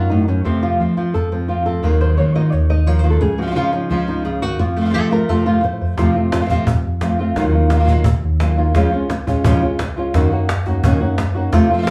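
Flamenco in F phrygian dominant at a brisk 174 BPM, this short excerpt feels dramatic and fiery. A thumb-plucked flamenco guitar carries the melody from F2 up to Eb5, up front with a plate reverb, while a second, bright fingerpicked flamenco guitar adds stabs over a round, dark fingered electric bass. The first 6.0 seconds feature the nylon-string guitar as soloist over the chords F, Ebmadd9 and Db. At 6.0 seconds a snappy cajon with snares enters up front, driving the second section as the harmony moves through Ebmadd9 and Db to Gb6. The whole is heard from further back in a small room, with a wet studio reverb around the players.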